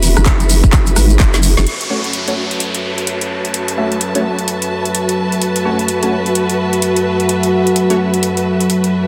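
This bouncy, swaggering bass house excerpt opens on a drop built from a nasal, resonant vowel-sweep wobble bass, a moody analog pad, a bowed chamber string section with vibrato, a grainy tube shaker, and a garage drum kit with woody snare, metallic hats, claps and rim clicks, joined at 0.3 s by a tight, up-front electronic kick; the drop closes on a drum fill and accent before the wobble bass stops at 1.7 s, after which a downlifter sinks beneath the filter-swept pad and strings while, from 1.9 s, bold, bright orchestra-hit-like synth stabs arrive with phaser, tape echo and 12-bit sampler grit in a dense, heavily limited mix.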